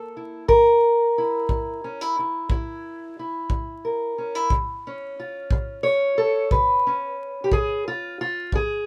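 Soulful and gritty, this short fragment of acoustic country blues moves at a slow 60 BPM with a straight 12/8 feel, sitting in F# mixolydian with tuning at A4 = 441 Hz. A dark, boxy parlour steel-string guitar, fingerpicked and up front, carries the melody over F#7 before shifting to C#7 at 4.5 seconds, while a punchy kick drum played with brushes enters at 0.5 seconds, also close and present. A modest booth ambience and a layer of vinyl crackle give the sound an old, intimate grain.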